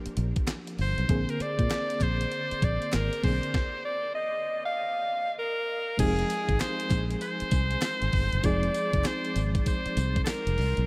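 New jack swing R&B cut from a longer piece, punchy and slick, with an edgy, forceful alto saxophone up front, its vibrato and delay riding over a dark FM electric piano with tremolo, a round, foam-muted fingered bass, a thumpy, fat-snared 12-bit drum machine with tambourine and handclaps, and a barely audible group handclap, in a dreamy mix soaked in huge ambient reverb and broken by a stop from 3.5 to 6.0 seconds.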